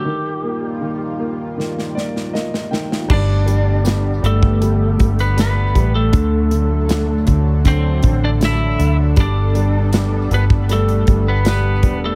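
Tender and emotional, this pop ballad excerpt pairs a twangy, slightly broken-up lead guitar melody with dub echo against clear grand piano and a shimmering, detuned pulse-width pad, before a piano and drum fill at 1.6 seconds brings in up-front drums with a punchy kick and bright cymbals, a dark foam-muted electric bass enters at 3.1 seconds, and a jingly tambourine with its own dub echo sits in the background of an echo-heavy mix.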